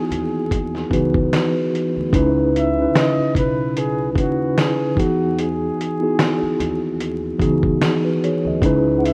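A mellow tine electric piano sits up front in this reflective, nostalgic lo-fi hip hop excerpt, its clean tone heard through built-in speakers and softened by cassette tape and a low-pass filter as it moves between Emaj9 and C#m9 in C# minor. Above it, a breathy flugelhorn carries the solo melody in an intimate jazz style, with whispered vibrato, scooped notes, a soft attack and a smooth, filtered top. At 0.1 seconds a woody pizzicato upright bass joins low in the mix, alongside a gritty, compressed sampler-style drum kit with a thumpy kick, fat snare, hi-hat and finger snaps, re-recorded in a small room and placed up front. The groove sits at 74 BPM in 4/4 with a gentle swing on the sixteenths, giving it a lazy, nodding feel. Light reverb and digital ambience frame a rough home-demo mix dusted with vinyl crackle.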